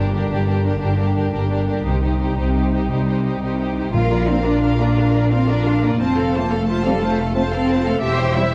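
Cinematic and triumphant in 12/8 at 117 BPM in Bb major, this soaring excerpt builds for its first 4.0 seconds as a vibrato-rich violin section carries the expressive melody over a second violin line, lush violas, ringing background harp arpeggios and a focused cello and up-front double bass foundation, before a dry timpani stroke at 3.9 seconds and mellow French horn chords from 4.3 seconds usher in the shift from minor chords to Bb major, all in a dark, reverberant recital-hall sound.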